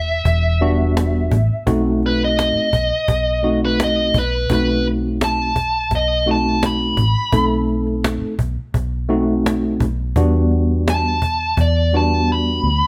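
A dark, smooth overdriven lead guitar opens this brooding, mournful soul blues fragment at once, its picked solo sitting up front from B4 to B5 over a round, foam-muted electric bass that is amped and equally forward in the low register. The cajon joins at 0.3 seconds with a woody, close and dry sound, soft hands and faint snares, while a worn tine electric piano, slightly out of tune and lightly overdriven through its built-in speakers, enters at 0.6 seconds with accompaniment between G3 and A4. The band moves at a straight-eighth 85 BPM in 4/4, tuned to A4 = 438 Hz, playing live together in one room with light reverb. The harmony rests on Em7, shifts to a long stretch of B7b9, and returns to Em7 near the close. Near the end, the cajon's kick and snare drop out from 12.3 seconds, while the bass and piano hold on briefly and the guitar solo carries through to finish a passage cut from a longer piece.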